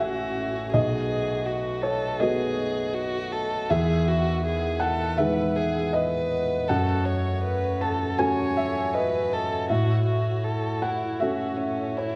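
A dark, woody violin carries the melody in this short neoclassical passage for piano and strings, played by a single bowed player with vibrato and a smooth top, sitting up front in the mix. Beneath it, a felt-muted upright piano supplies soft, intimate accompaniment, its mellow and boxy tone also placed close to the listener. A reedy pedal harmonium holds sustained chords in the background, its breathing quality adding a faint sense of enclosure. The mood is longing and melancholic, with a flexible rubato feel in 4/4 as the harmony moves from A6 through B7 and Emaj7 to F#m before returning to A6 at 9.7 seconds. A moderate recital-hall reverb surrounds the three parts, lending the sound of a church or concert hall to this 12.2-second fragment taken from a longer piece.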